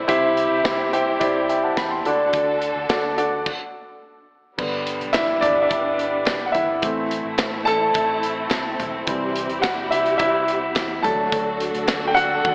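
At 107 BPM in a straight 4/4, this hopeful, anthemic piano-driven pop excerpt in G major opens on an intimate grand piano up front, with slapback echo, audible action noise and long sustain, over lush bowed strings with vibrato and a smooth top, a round, foam-muted electric bass sitting in the background, and a polished drum kit with a punchy kick and medium-tuned snare. After a stop from 3.5 to 4.6 seconds, the piano takes a solo through to the end while the harmony moves from G to Am, C and D, and very quiet, hollow group handclaps come in at 5.1 seconds. The whole is bathed in a wet concert hall reverb that lends a big arena scale, tinted by an AM radio character.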